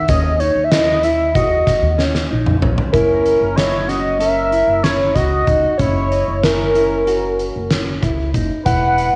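A hollow, chorused square-wave lead with vibrato carries the melody up front from the first moment, over dark, clean fingered arpeggios from a mellow electric guitar soaked in tape echo. A woody, growly pizzicato upright bass and an oversized low-tuned drum kit with a fat snare, boomy kick and gritty saturation drive this bright progressive instrumental in 9/8, and a drum fill at 2.0 seconds leads into a new section at 2.9 seconds, where the harmony moves from D#m7 to F#7 and a warm flugelhorn enters with a vibrato-laden second line. The lead and drums carry a cassette tape colour, and this excerpt from a longer piece sits in light reverb on a home cassette recording with a dulled top end.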